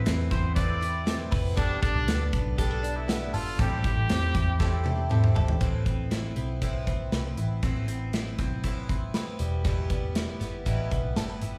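Jangly indie pop with a bittersweet, restless mood, heard as a live club performance through the venue's PA with reverb and vinyl crackle, cut from a longer piece. A warm, lightly vibrato trumpet carries the melody over a woody, intimate upright piano until both drop out during a drum fill, the trumpet at 5.1 seconds and the piano at 5.6. A shimmering, octave-doubled twelve-string acoustic, a bright, compressed clean electric guitar playing phased arpeggios with slapback and tape echo, a dark, round foam-muted bass and a punchy, up-front rock kit carry on through to the end.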